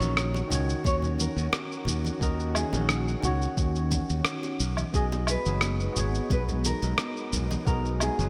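A dark, full-bodied nylon-string guitar carries the thumb-plucked melody, finger squeak and all, through delay, over a worn, slightly out-of-tune tine electric piano with light overdrive and 12-bit sampler grit, a bright, growly fingered bass up front, and a gritty shaker, rim click and woodblock kit with very quiet congas and bongos. A thick, detuned sawtooth pad with chorus drifts in behind at 0.3 seconds, and a soft, tape-warm electronic kick enters at 0.8 seconds as the harmony moves from Ebm7 to B6 at 4.6 seconds. This smooth sunset chillout excerpt sits in a lush hall reverb with bright 1980s-style digital production.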